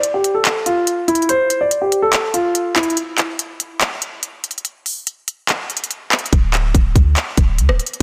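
A dark, mellow concert grand piano opens this menacing trap cut, playing a short melody in D minor through a low-pass filter and tape echo before falling away at 2.9 seconds. The track moves at 143 BPM with a half-time feel, and the eerie mood is carried by an up-front trap drum kit of handclaps, crisp hi-hats, a hard-clipped kick and rim clicks, with soft clipping on the snare. The kit runs the full length of the excerpt, holding the space alone after the piano drops out. At 6.3 seconds a deep, boomy 808-style bass arrives, its sine tone layered with noise, striking with a fast attack and decaying into darkness. Light reverb and a digital ambience surround the parts, and the dense, heavily limited modern master keeps the sound thick and forceful.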